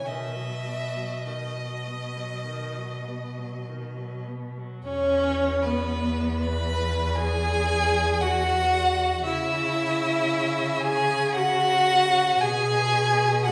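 An up-front violin with soft attack, vibrato and expressive portamento sings a high second line over a rich, smooth melody violin set in the background, an even viola accompaniment and a warm, up-front cello bass with its own vibrato and portamento, in this serene, rubato excerpt from a slow romantic string quartet movement, its chords moving from B to E at 4.8 seconds and to C#m7 at 9.3 seconds in a reverberant recital hall.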